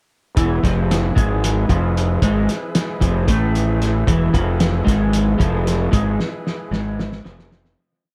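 Psychedelic rock in 7/8 at 226 BPM, dark and hypnotic, built on a single riff over an E chord, where a twangy, slightly broken-up guitar through a small old amp plays an octave riff with flanger and analog delay, doubled by a fuzzed, overdriven fingered bass, while a muffled, cloth-damped drum kit with a fat snare and tight kick drives the groove through echo, an overdriven combo organ with heavy vibrato holds mellow sustained chords in the background, and a drum fill arrives at 6.2 seconds as the piece fades out.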